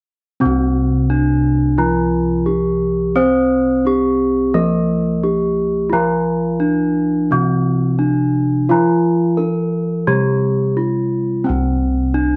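A small room's light reverb surrounds this serene, ceremonial stretch of Javanese gamelan, cut from a longer piece and moving at 87 BPM in a straight 4/4 in C slendro. Two bronze metallophones sit up front, one ringing under a wooden mallet and the other bright and airy under a horn mallet, carrying a melody and a lower accompaniment that stops at 11.4 seconds. Beneath them, bossed gongs supply a round, beating bass, and the melody and gongs sound on until 12.4 seconds.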